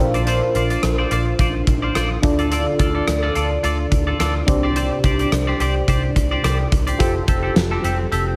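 Romantic and uplifting, this short cut from a longer 1980s-style pop piece moves at 107 BPM in 4/4 with a light 16th-note swing. A mellow, warbling FM electric piano with a phaser carries the accompaniment through Bbadd9, Dm, Csus2 and Fadd9, while a bright, twangy clean electric guitar plays a riff through analog chorus and digital delay. A round, foam-muted picked bass holds the low end, and a huge, hall-sounding arena drum kit with a fat snare and punchy kick sits up front, all wrapped in light reverb.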